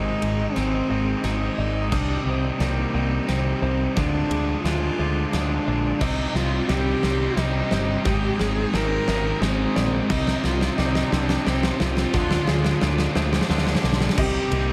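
Set in light studio reverb, this melancholic, cinematic post-rock excerpt in C minor moves at 88 BPM in 3/4. A single bowed cello sings an expressive, vibrato-rich melody through tape echo over very quiet arpeggios from a compressed clean electric guitar and a mellow, felt-muted upright piano, while a bright, overdriven stack guitar riff and a growling, overdriven picked bass sit up front. A big-room acoustic drum kit with fat snare and punchy kick enters at 0.2 s, and a thick fuzz guitar joins in the background at 6.0 s as the passage builds through a continuous drum fill.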